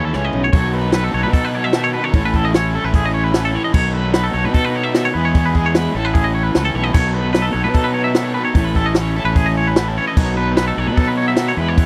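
A dry, close 1970s-style studio sound frames this wistful, intricate math rock and midwest emo passage at 150 BPM in 4/4, where a lo-fi, slightly broken-up guitar through a small old amp sits in the background only until 0.6 s, a compact cocktail drum kit with dark cymbals, a high-tuned snare and a punchy kick plays a fill from 0.2 to 0.6 s, and a clean, twangy guitar spins harmonic-tremolo arpeggios over an overdriven, double-tracked garage guitar riff and a fuzzy fingered bass pushed up front, the harmony moving between Aadd9 and B9sus4 with a brief E.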